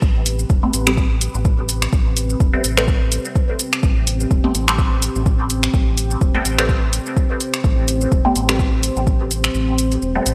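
Hypnotic and cavernous, this dub techno excerpt moves at 126 BPM in A minor with a lightly swung 16th-note feel, resting on a single Am9 chord. A deep, moody pad holds sustained chords throughout, its detuned sawtooth voices softened by chorus and built-in reverb and breathing with sidechain pumping. Beneath it, a round analog bass mixes sawtooth and sine tones with a touch of ring modulation, also pumping against the beat. An up-front, overdriven house kit of finger snaps, hi-hat and shaker sits in gated reverb alongside a deep electronic kick, which drops out at 9.2 seconds. From 0.6 seconds, a filtered dub chord stab adds resonant, wave-folded plucks, colored by phaser and trailing dub echoes, all within a bright, 1980s-style digital production with light ambience.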